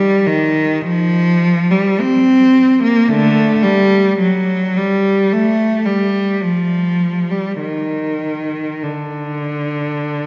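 Mournful and yearning, this classical excerpt features a single unaccompanied cello in G minor, moving freely in rubato at around 47-57 BPM in 4/4. The bowed cello sits up front with a rich, focused tone and vibrato, singing between D3 and C4 across its 10.3 seconds. A wet church reverb with a 3.1-second decay surrounds the playing.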